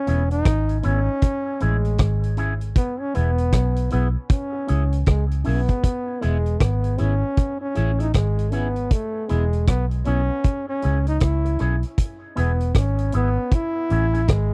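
A 78 BPM groove in 4/4, swung on the sixteenths, sets up this sunny, warm roots reggae cut taken from a longer piece in E major. The vintage drum kit sits up front with a tight kick, rim clicks and hi-hat, its saturated, gritty sound mid-forward with a rolled-off top, while the foam-muted fingered electric bass holds down a dark, round, amped low end. An electric guitar with an envelope filter plays accompaniment in a bright, clean, twangy picked tone, colored by phaser and dub echo and mixed further back. Over this, a clear trombone carries the melody from the very start, present and up front with light vibrato, scooped notes and a pop-style lead feel, its dub echo trailing the phrases. The harmony alternates between E and C#m throughout, with the arrangement moving into a new section at 5.8 seconds. The sound is dry and close, like a 1970s studio recording with little reverb.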